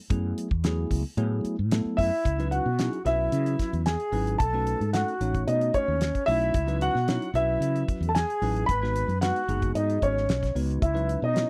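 Driving and intense, this electric jazz fusion excerpt in C# minor moves at 112 BPM in a straight 4/4. From the start, a fat-snared, tight-kicked 70s drum kit and a round, dark fretless bass sit up front beneath a bell-like tine electric piano with phaser, all moving through chords such as F#m11, C#m11 and B9. At 2.0 seconds a mellow grand piano with audible action noise takes the melody, joined by a breathy, reedy concert flute with vibrato on a second line, all captured in a dry, close 1970s-style studio sound.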